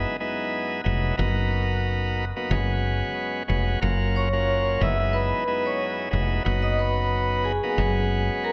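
Boom-bap hip-hop at 91 BPM with a lightly swung sixteenth feel, this confident, soulful excerpt opens with a bright, shouting tonewheel organ, lightly overdriven through a stopped rotary speaker and cassette-tape coloring, comping over chords such as Emaj7/F#, Bmaj7/F# and C#7sus4/F#. Up front alongside it, a woody, round fretless electric bass holds down a dark, hollow-bodied low end until 8.3 seconds. At 4.2 seconds a metallic, ringing vibraphone with medium hard mallets and fast motor vibrato takes the melody through tape echo, all set in a moderate scoring-stage reverb.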